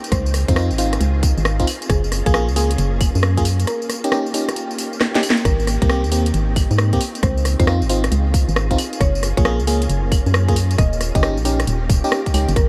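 Silky, warbling string-machine chords with vintage sampler grit and sidechain pumping sit in the background of this soulful, bouncy two-step UK garage excerpt, alongside a swung garage kit of cracking snare, warm hats, rim clicks, claves and tambourine; a tight electronic kick, a dark, hollow organ-like FM bass up front and a woody, mellow mallet-like pluck melody with chorus and tape echo join at once, glassy, bell-like FM electric piano stabs arrive at 0.5 seconds, and a drum fill lands at 5.0 seconds, with light reverb and vinyl crackle across the mix.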